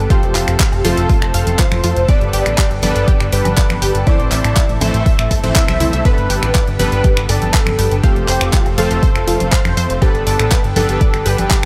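Progressive house at 121 BPM in 4/4 with a straight feel, this euphoric, expansive excerpt sits in G mixolydian and cycles through F, Gadd9 and Am chords, cut from a longer piece. An expressive portamento lead carries the melody with a smooth, warbling, vintage tone, its dark sawtooth-and-sine voice shaded by vibrato, ensemble chorus, sidechain pumping and tape echo, while a soft, pure FM bell traces a very quiet second line in the same range. Beneath them a lush, thick unison pad holds bright, chorused chords with a slow attack and long release, and punchy supersaw stabs with tape echo cut through at the same level as the lead. A funky, plucky analog bass with a moving notch filter anchors the low end, and a detuned, wave-folded unison pluck spins arpeggios in the background, all pumping against the sidechain. The deep, tape-warm electronic kick sits up front alongside a deep house kit of finger snaps, handclaps and hi-hats re-recorded in a small room, while ringing, close and dry woodblock and congas enter at 0.7 s in the background, the whole set in a generous digital ambience.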